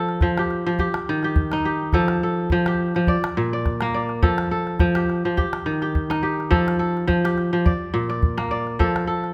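A lightly swung sixteenth-note groove at 105 BPM in 4/4 carries this flowing, warm stretch of West African traditional music, cut from a longer piece in F mixolydian. Up front, a mellow, ringing kora is fingerpicked in crisp arpeggios spanning Bb2 to D5 over chords moving between F, Eb and Bb, while a deep calabash sits close beneath it from 0.1 seconds. A moderate recital-hall reverb gives the pair a natural sense of space.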